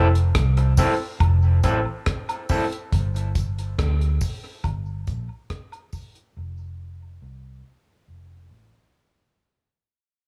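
A meditative, hypnotic dub reggae fragment, cut from a longer piece and fading throughout, opens on a bright, slightly broken-up, twangy electric guitar through a small old amp, filtered and soaked in dub echo over an Fmaj7 chord, alongside a round, punchy, foam-muted fingered bass sitting up front; the guitar drops out at 2.6 seconds, leaving a break over G5 and then F5 chords, while a dry, dark reggae kit with a tight kick, hi-hat and rim click runs until 6.3 seconds with close, echoing tambourine and woodblock beneath, and the bass carries on alone to 8.7 seconds in a light small-room ambience.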